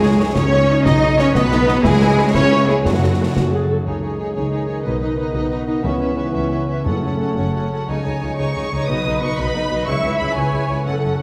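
Rich, focused cellos anchor this determined, swashbuckling cinematic adventure cue in 6/8, with distant double basses beneath, a lush violin melody with vibrato and an expressive second violin line above, portamento-tinged violas and ringing harp arpeggios in the background, concert snare and bass drum with bright cymbals from 0.4 to 3.5 s, round soft-mallet timpani, and tight trombone chords from 3.9 s, set in a wet scoring-stage reverb.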